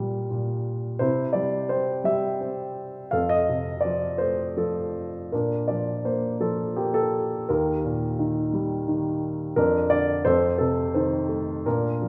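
A grand piano carries this lyrical classical piece entirely alone, its tone present, polished and placed up front, with notes that decay quickly. The mood is hopeful and warm, moving at about 85 BPM in 3/4 with a flexible, rubato feel, and the instrument is tuned to A4 = 439 Hz. Across a range from Eb2 to F5, the harmony travels from Gm/Bb through C, F, Bb and Eb before settling on Bb/F and closing on F7 at 10.3 seconds. The piano sounds as though it was captured in a church or concert hall, with a moderate reverb tail of 1.8 seconds adding a gentle glow around each phrase. This 12.1-second passage is cut from a longer piece and ends poised on that final F7.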